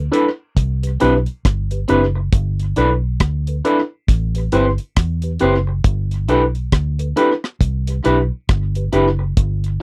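A worn, slightly out-of-tune tine electric piano and a dark, foam-muted, round fingered bass open this smooth, romantic lovers rock reggae fragment with a 16th-note swing, joined at once by a deep drum kit with a tight kick, rim clicks, hi-hat and a rolled-off top, and a bright, twangy, slightly broken-up guitar playing picked stabs, all up front in a dry, close 1970s-style studio sound as the chords drift between G6, Cmaj7 and Am7.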